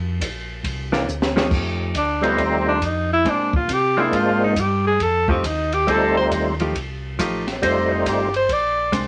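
Soul jazz organ trio excerpt with a soulful, swinging feel, where a round, mellow tonewheel organ carries the bass through a slow rotary speaker, a compact cocktail drum kit with a high-tuned snare and tight kick enters at 0.2 s, a dark hollow-body jazz guitar adds picked accompaniment, and after a drum fill a clear alto saxophone takes an up-front solo with vibrato and scooped notes from 2.0 s, joined by a fat, lightly overdriven percussive organ with chorus vibrato and key click, all in a moderate studio reverb.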